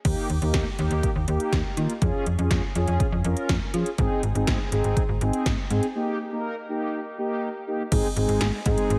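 A snappy, digital FM bass with a slap-like, quickly decaying attack sits up front in this bright yet wistful synth-pop excerpt, moving at 122 BPM in a straight 4/4 in Ab major. Punchy kick, gated snare, metallic hi-hats and crash cymbal from a tape-warm, analog-flavored 80s electronic drum kit drive the groove. Mellow synth brass supplies sustained accompaniment chords with a round, dark sawtooth tone, a filter sweep and a chorus shimmer. All three parts play throughout, with the harmony moving from Eb through Db/F to Ab and back to Eb as a break at 6.0 s leads into a new section resolving on Ab at 7.9 s. A lush hall reverb surrounds the mix, and heavy compression gives it a dense, radio-ready sound.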